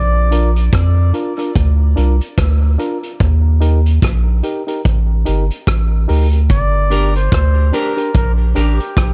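A 73 BPM dub reggae groove in 4/4 with swung sixteenths lays out a meditative, deep mood, as a round sub bass holds the low end under a vintage kit's punchy kick, hi-hat and rim click, while a reedy electric piano drops echoing stabs over Bb and Eb, and after a break a clear flugelhorn with vibrato returns on the melody at 6.5 seconds, joined briefly by a clean, chorused electric guitar on Gm in a dark, small-room mix.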